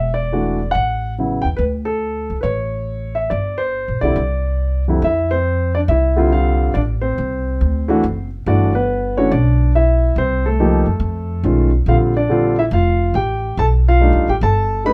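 Relaxed and swinging, this jazz piano trio excerpt moves at 140 BPM in 4/4 with a 65% swing on the eighth notes, tuned slightly low to A4 = 438 Hz. A warm concert grand piano with a deep low end carries the melody across the full 14.9 seconds. Beside it, an upright bass, woody and pizzicato on steel strings, sits up front, with both instruments in light reverb. The harmony shifts from E9sus4 and Cadd9 into a second section at 5.0 seconds, which works through Am, D7, G69 and altered dominants before closing on B7alt.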